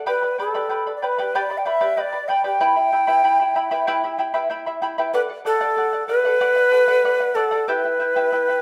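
Andean folk with an earthy, festive mood, played live by an Andean ensemble in a stone room whose reverb lends a damp, echoing glow. A large wooden quena carries the melody with a breathy tone, a chiff on each crisp attack and vibrato, sounding alongside the fingerpicked charango, whose mellow double strings shimmer with some octave-doubled courses. The short cut moves through G, E minor and D before returning to E minor at 7.7 seconds.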